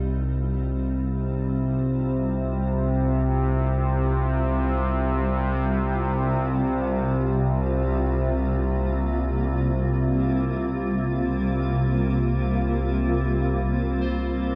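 Floating in free time, this dark ambient drone feels vast and ominous, a passage cut from a longer piece. An up-front analog drone holds the low end from C2 to C3: a detuned sawtooth and pulse-wave sound with pulse-width modulation, chorus and a vintage warble, slowly evolving as it sustains. Above it, a granular cloud pad of blurred, triangle-based unison voices carries sustained chords, fading in over the first 13.7 seconds, moving from C minor to B-flat sus2 over C at 3.9 seconds. At 14.0 seconds a reversed, swelling texture enters high on C5, a bright and dreamy granular shimmer sitting quietly in the mix. The whole passage is bathed in a cavernous cathedral reverb with a 5.6-second decay, lending the slow-attack, long-release sounds an enveloping sense of space.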